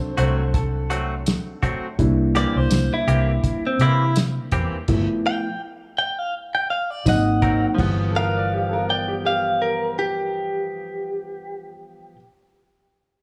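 Laid-back and rollicking, this straight-eighth soul blues excerpt pairs a gritty, barky overdriven reed electric piano with a round, foam-muted fingered bass and clean guitar stabs carrying a warbly pitch drift, while a dry, cloth-damped drum kit of crash, hi-hat, tight kick, fat snare and tambourine plays until 8.0 seconds, a woody upright piano adds a second line, and a bright, twangy guitar melody treated with phaser enters at 2.4 seconds, with a stop at 4.9 seconds and light small-room ambience.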